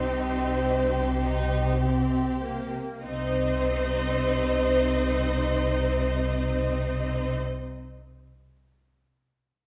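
Elegiac and solemn, this brief slow romantic movement for string orchestra moves in a rubato 6/8 around 31-36 BPM in the dotted quarters, set in C minor and resting on a C minor chord from the start. Two violin sections carry the top: one sings the melody between G4 and Eb5 with vibrato and a soft attack, while the other holds a second line on C5, both sounding warm and lush. Beneath them, an intense, up-front viola section fills in the accompaniment between Bb3 and Eb4, and a dark, even cello section joins a rich, up-front double bass section in the bass on C3 and C2. All five parts play together from 0.0 to 7.4 seconds, with the tempo slowing over the opening 3.1 seconds before a second section begins. A wet hall reverb gives the bowed ensemble a spacious, resonant setting, and the piece sounds cut from a longer work.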